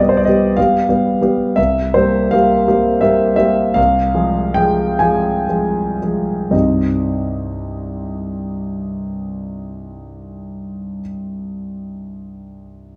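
A close, intimate concert grand piano with deep bass and audible action noise plays alone in this stormy, passionate excerpt of a romantic classical character piece in C minor and 6/8, its rubato pulse of 36-64 BPM in dotted quarters slowing from 0.6 to 6.5 seconds as the harmony moves from G7/C through C5 and Fm/C to C minor at 6.5 seconds, heard in a moderate large-studio reverb with a dark, warm production.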